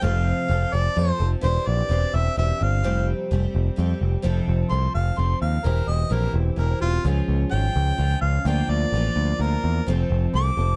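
A dark, dry-sounding slice of folk rock and heartland rock in 3/4 with a hopeful, open-road mood, built on a shimmering, octave-doubled twelve-string acoustic guitar and a punchy, up-front picked electric bass, while a mellow harmonica with light vibrato and scooped notes carries the melody and takes a solo from 4.2 s as the chords move through C/E, Db and Bb before settling back on F.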